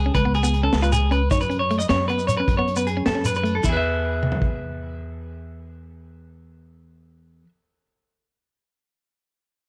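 A rolling 12/8 pulse at 103 BPM in dotted quarters drives this short, sunny highlife guitar band passage in E major, cut from a longer piece and carrying a joyful feel. A bright, twangy clean electric guitar sits up front with picked arpeggios from E4 to E5, trailed by tape echo, while a second clean electric guitar, compressed and warm-toned, adds picked accompaniment lower down before dropping out at 3.8 seconds. The pizzicato upright bass, woody and up front with steel strings, holds a low register between C#2 and F#2 and carries on to 7.4 seconds. A crunchy breakbeat drum kit with a saturated, gritty character, dark cymbals, a high-tuned snare and a tight kick plays crash, hi-hat, toms and snare until 4.5 seconds, joined by a grainy, close and dry shekere. The harmony moves from F#m to E as the second section arrives at 3.6 seconds, all set in a light reverb.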